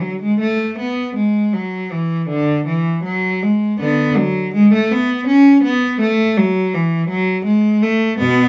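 A lone bowed cello opens the recording and carries it alone from 0.0 to 8.5 seconds, its rich, focused tone shaded with vibrato and set in light reverb. This radiant, dance-like baroque-style suite movement moves in 3/4 at around 81 BPM with a rubato feel, the line ranging from B2 to C#4 and tuned to A4 = 442 Hz. The passage is cut from a longer piece.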